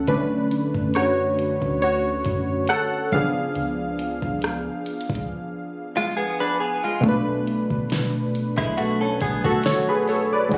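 Sensual and longing, this contemporary R&B fragment, cut from a longer piece, moves at a slow 69 BPM in 4/4 with a light sixteenth-note swing, as round, detuned analog keys with a sawtooth edge and chorus sit up front over a deep, sine-like 808-style bass and a soft electronic kit of gentle kick, fat snare, rim click and hi-hat. The keys carry a solo from the start through 7.0 seconds across Bm9 and C#7b9, and a clean, compressed electric guitar enters at 6.0 seconds with picked arpeggios touched by subtle chorus and delay. At 7.0 seconds the harmony settles onto Bm7, all heard through light studio reverb with the intimate colour of a phone recording in the room.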